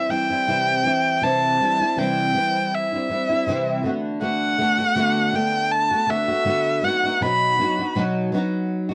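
A warm, bowed erhu sings a smooth, even melody with vibrato and portamento over fingerpicked, double-tracked flamenco guitar with fresh strings in this reflective, tender pop excerpt with a light 16th-note swing, both parts up front in a dry, close 1970s-style studio sound with light reverb, the guitar carrying on alone after the erhu stops at 8.0 seconds.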